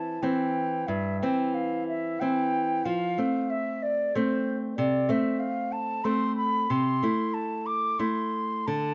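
In a rubato 12/8 lilt of about 61 dotted-quarter beats per minute, this elegiac, solemn fragment of a romantic duo has an airy, straight-toned concert flute with a soft attack and plate reverb singing the melody between C5 and D6, over a small, fingerpicked nylon-string guitar accompaniment moving from C to F at 2.9 s and settling on Am/C at 6.7 s, all in a dark, warm small-room sound tuned to A4 = 441 Hz.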